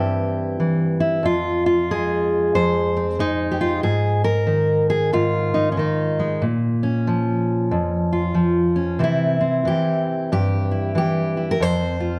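A gently swung 4/4 pulse at 93 BPM carries this haunting, intimate folk excerpt in F minor, where a lone fingerpicked steel-string dreadnought, dark and full-bodied with audible finger squeak, sits up front in a moderate concert-hall reverb and moves from an opening C through Fm7, Ab5, Bbm and back to C before settling on F5 near 11.6 seconds.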